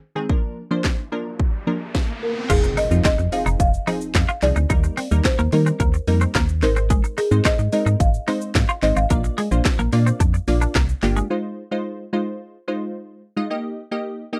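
Confident and driving, this dance-pop excerpt moves in a straight four-four pulse with a dry, close sound in the manner of a 1970s studio. A crisp, detuned wavetable chord stab opens the passage with sidechain pumping and carries on to its close at 14.4 seconds, while a layered house drum kit with a punchy kick, cracking snare, handclaps, hi-hat, shaker and crash cymbal sits up front until 11.3 seconds. A riser builds from 1.3 seconds into an impact at 2.5 seconds, where a round, dark FM bass, also pumping to the sidechain and placed up front, joins alongside a twangy twelve-string electric guitar riff bathed in lush chorus. A woody marimba played with soft mallets carries the melody through tape echo, its mellow, rustic tone sounding alongside the bright, compressed guitar. The harmony cycles through Fm7, Eb, Ab and Bb, and once the bass, guitar and drums drop out, the chord stab carries the closing seconds over Fm7 and Eb.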